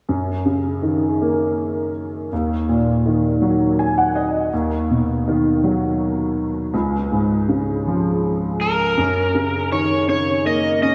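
Soaked in a lush hall reverb with a dreamy glow and a touch of small-room ambience, this short romantic pop excerpt sways gently in 6/8 at 54 BPM in F# major. A clear baby grand piano sits up front throughout, its polished tone thickened by an ensemble chorus as it carries the accompaniment across a broad register. The harmony moves from F#6 through D#m, B/D# and C# before returning to F#6, and the piano adds a brief fill around 3.4 seconds. At 8.6 seconds an overdriven electric slide guitar, played with fingerpicks, enters up front with a bright, tender melody in a narrow upper range. It carries the close into a new section, giving the tender mood a singing, romantic edge.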